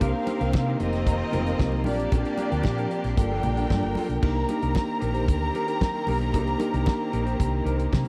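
A fat, tight 70s drum kit sits up front with its dry snare and kick, joined by a dark, round hollow-body bass, driving a joyful, glamorous disco groove at 114 BPM through Cm7, F7sus4, Bb6 and Gm9. A lush, distant string section carries the second line above clear, biting sustained string chords. A mellow, warm tine electric piano accompanies alongside and adds a fill from 7.4 seconds, while a dark clean guitar with spring reverb and bright, hard-handed congas fill out the background. The close, dry 1970s-style sound carries vinyl crackle and light reverb in this short cut from a longer piece.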